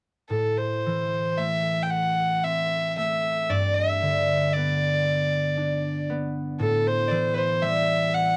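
At 0.3 s a single fiddle and a concert harp begin together in this mournful, haunting Celtic slow air, a fragment of a longer piece in A dorian that moves freely around 57 BPM in 3/4. The fiddle carries the melody with an airy, reedy, gut-string bowed tone, while the fingerpicked harp gives mellow, ringing accompaniment beneath it over chords that move from Am to G at 3.5 s and settle on Am7. Both sit up front in a dry, close, 1970s-style studio sound with a small room's ambience.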